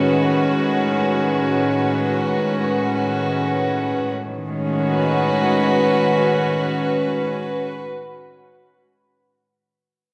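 Serene and peaceful, this short ambient passage, cut from a longer piece, drifts in free time. A chamber string section plays alone from 0.0 to 7.8 seconds, its bowed ensemble sound rich and pure with a soft attack and the airy sul tasto colour. Sitting close and up front, the strings span from A2 up to B4 and seem to float, voicing an Amaj7 harmony heard from the start. The passage moves from an opening section into a second one at 4.1 seconds. A wet concert hall reverb with a 2.2-second decay surrounds the strings.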